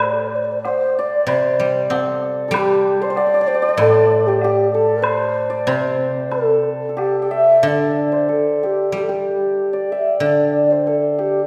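A rubato pulse loosely anchored at 94 BPM in 4/4 carries this graceful, festive passage of Chinese traditional chamber music in the G zhi mode, cut from a longer piece. A low xiao leads with a pure, tongued bamboo tone colored by vibrato, sounding slightly distant yet expressive as it sings the melody. Close up front, a hammered dulcimer traces a shimmering second line a little higher, while a guzheng played with fingerpicks adds a silvery, ringing accompaniment down in the lower range. A dark-toned woodblock marks the time until it drops out at 7.1 s, and shortly after, at 7.6 s, the music moves into a new section that carries through to the close. A moderate reverb suggests a church or concert hall, giving the ensemble a spacious, resonant glow.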